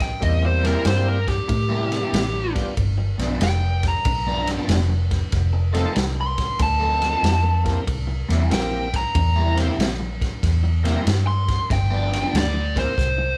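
A dark, smooth overdriven lead guitar solos up front through this laid-back, gritty electric blues shuffle at 94 BPM in C mixolydian, over a round, punchy muted bass, a crunchy, saturated breakbeat kit with dark cymbals and a tight kick, a bright, shouting tonewheel organ with key click and slow rotary speaker entering at 0.2 seconds, and a hollow-bodied overdriven semi-hollow guitar riff with phaser from 0.4 seconds, all moving through C7, G7 and F7 in a moderate stone room that sounds like a band playing live.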